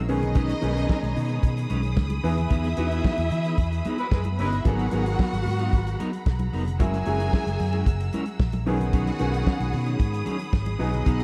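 Joyful and celebratory, this short disco excerpt moves at 112 BPM in a straight 4/4 feel in B major, cycling through rich chords from B6/9 to Emaj7, G#m9 and F#9 before landing back on B6/9. A dry, dark soul drum kit with a tight kick and rolled-off top sits up front alongside a growly, round fingered electric bass, while very quiet congas with a bright, thin skin add color from 0.2 seconds. A mellow electric guitar with tremolo tucks into the background beside a baby grand piano with short sustain, both supplying accompaniment. Two string sections fill out the arrangement: a clear, lush one holding sustained chords up high and a warm, expressive one carrying a second line with vibrato and portamento. A band accent runs from 2.5 to 4.7 seconds, and within it a punchy, vintage horn section fires tight stabs touched with analog delay. The production is dark overall, with light reverb and a studio ambience.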